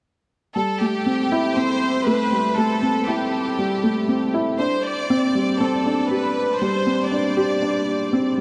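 A huge, wet ambient reverb with a tail of about 6.8 seconds surrounds this short electronica fragment, cut from a longer piece, giving it a cinematic, hypnotic atmosphere. A dark, woody upright piano with a mellow, vintage character sits up front, repeating a low riff from 0.6 to 8.4 seconds. Over it, a chamber violin section plays the melody across the same span, its bowed ensemble tone clear and biting yet earthy, touched with light vibrato. The harmony rests on Am7 before shifting to Gsus4 at 4.6 seconds, leaving the phrase suspended. In a steady, straight 4/4 pulse, the smooth piano and the strings together create a spacious, cinematic mood.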